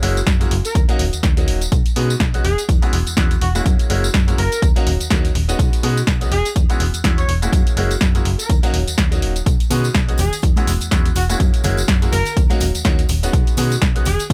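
Funky and joyful, this filtered disco house excerpt struts at 124 BPM in B major with a swung 16th-note feel, cycling through F#7, D#m7, B6 and E69 chords. A snappy, metallic FM slap-style bass and a bright, brilliant grand piano with phaser and 12-bit sampler grit pump against drum-machine hi-hats, snare and tambourine from the start, joined at 0.3 seconds by the punchy, tape-warm analog kick. A smooth horn section with light vibrato and tape echo carries the melody from 0.7 seconds, and close, dry tambourine and congas join in the background at 9.5 seconds, all within a small room ambience.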